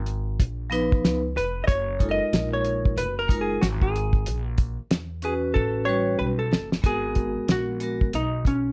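A dark, clean hollow-body jazz guitar with slapback echo carries the melody in this smoky, nocturnal swung jazz-hop excerpt, backed by bright, ringing vibraphone with a slow motor vibrato, a woody, thumpy pizzicato upright bass and a dry, cloth-damped kit with a fat snare and tight kick that plays a fill from 5.6 s before the music settles onto G#m9 at 6.8 s.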